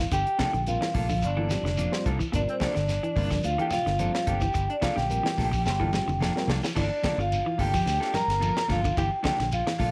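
The tight funk drum kit drives a 4/4 afrobeat groove at 108 BPM with a light 16th-note swing, its high-tuned snare and tight kick sounding dry, while a drum fill runs from 5.7 to 6.8 seconds. Round fingered electric bass sits low under the kit, and hard-handed congas with a bright, thin skin and a mellow, grainy shekere add percussion in the background. This defiant, hypnotic excerpt from a longer piece rests on a Gm9 chord in G dorian. A clean electric guitar picks arpeggios in the background, a hollow-body semi-hollow guitar adds picked stabs, and a reedy electric piano with fast tremolo enters at 0.7 seconds and drops out at 6.5 seconds. Up top, a vibraphone played with soft mallets and the motor off carries the ringing, metallic melody. Beneath it, a distant, roomy alto saxophone with vibrato plays a second line, and a light studio reverb gives the mix some space.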